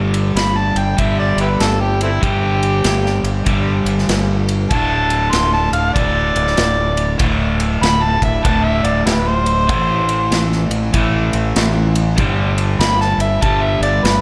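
A crunchy, overdriven guitar riff opens this raunchy, driving slice of blues rock and southern rock, double-tracked and up front, with a growling fingered bass carrying its own overdrive from the first moment. A big acoustic rock kit joins at 0.1 seconds, its punchy kick, medium-tuned snare and bright ride cymbal setting a swung 4/4 groove at 96 BPM. By 0.4 seconds an amplified, gritty harmonica takes the solo spotlight, sitting highest in the mix and played in a jazz style with light vibrato, tongue slaps and scooped notes, trailed by slapback echo and digital delay. The harmony moves from G5 to D5, then Am at 9.7 seconds before returning to G5. A moderate concert hall reverb gives the trio and harmonica a big arena sound, and the piece is cut from a longer recording.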